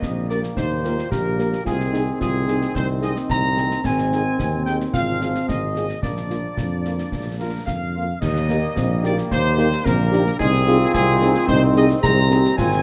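A festive, spirited military-style march for wind band in Eb major at 110 BPM in 2/4 opens with a bright trumpet section carrying the melody up front over a soft-attack tuba bass, a euphonium second line with light vibrato, distant, roomy trombone chords, and close, dry snare drum, bass drum and dark clash cymbals, while a mellow French horn section joins in the background at 0.3 seconds, the band set in a moderate recital hall reverb as the harmony moves from Eb through Ab to Bb in this passage cut from a longer piece.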